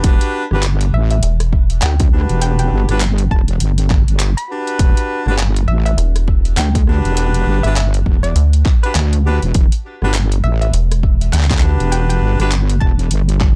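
A swung sixteenth-note groove in 4/4 drives this playful, gritty glitch hop drop, cut from a longer piece, with a punchy, up-front electronic kick and a pop kit of handclaps, rim clicks and metallic hi-hats. A heavy, saturated wobble bass anchors the low end. A rubbery, hollow square bass bounces in briefly at 1.2 seconds and returns at 6.0 seconds. Pop-style horn stabs with light vibrato, carried by sidechain pumping and tape echo, sit over a woody, wave-folded pluck melody with chorus in the background, all on a single Em7 chord in a dry, hardware-grit mix.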